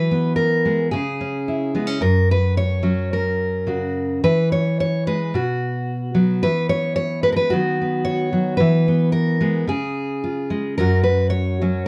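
A full-bodied, up-front fingerpicked steel-string dreadnought guitar plays alone through this hopeful folk fragment of 11.9 seconds, moving freely in a rubato 4/4 around 110 BPM over chords that circle from E through C#m, B/D# and C# to F#, tuned slightly low to A4 = 439 Hz and set in a dark, warm production with light reverb.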